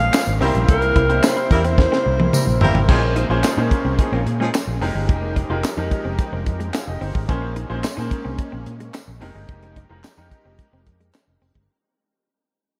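A straight 4/4 groove at 109 BPM drives this danceable, funky early-eighties boogie funk clip in F minor, where a tight, dark, up-front drum kit with a high-tuned snare and handclaps and a round, foam-muted fingered bass anchor a very quiet semi-hollow guitar riff, a sustained sawtooth analog pad, a jingly tambourine and a clear baby grand piano with lush chorus, while a subtone alto saxophone with scooped notes and diffuse delay plays the melody until 2.6 s and a distant, punchy horn section carries a second line until 4.5 s, all soaked in dreamy reverb as a drum fill gives way to a fade-out over Bbm9 and Fm11 from 2.9 s.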